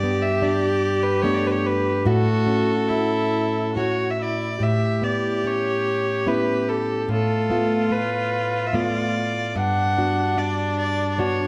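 Nostalgic and pastoral, this excerpt of a Celtic slow air in a free, rubato 3/4 sets an earthy, lightly vibrato-touched fiddle melody up front over a focused, bowed viola second line and a small, fingerpicked nylon-string guitar accompaniment, all three playing throughout and blooming in a moderate recital-hall reverb within a dark production.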